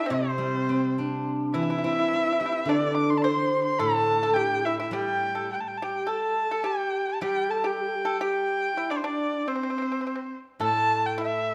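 A nasal, up-front erhu carries the melody with vibrato and portamento over a ringing, silvery steel-string zither accompaniment, while a low, airy bamboo xiao with a crisp attack and a dry, percussive fingerpicked pipa add second lines, giving this graceful, festive Chinese chamber ensemble excerpt in a C gong mode a rubato feel at 106 BPM in 2/4, set in a moderate scoring-stage reverb, with the xiao falling away at 10.3 s.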